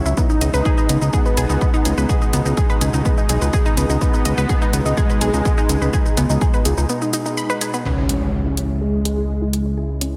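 A heavy, up-front electronic kick drives this dramatic, melancholic melodic techno piece at 125 BPM in C# minor, sitting beside a fat, saturated sawtooth bass, tape-toned layered shaker and hi-hat, and a punchy, ring-modulated unison pluck playing arpeggios through delay, all pumping against the sidechain except the percussion. A smooth, evolving soft supersaw melody with ensemble chorus, low-pass filtering and tape echo floats alongside a lush, warbling vintage pad holding sustained G#m chords in the background. The kick drops out at 6.5 s, and after a short break an electronic impact hits at 7.9 s as the harmony moves to C#m and a filter sweep moves across the pad, all bathed in a dreamy, reverb-soaked hall.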